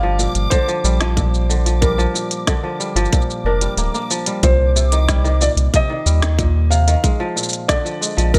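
A straight 4/4 pulse at 92 BPM in C minor drives this intimate, wistful folktronica excerpt. A tight electronic kick enters at 0.5 seconds and drops out briefly just before the second section begins at 4.4 seconds. An electronic kit adds a woody snare, smooth hi-hats and shaker in a small-room ambience, while a round, deep analog bass sits up front with a dark, sustained tone and a filter sweep. Over this, a crisp, ringing kora plays fingerpicked arpeggios and a soft, felt-muted upright piano carries the melody, both treated with delay. For the first 4.4 seconds, a reversed, dreamy, detuned texture with a granular grain and its own reverb hangs bright in the background. The harmony moves from Gm7 to Cm7 and then Bb7, giving the fragment a hushed, reflective quality within a digital ambience.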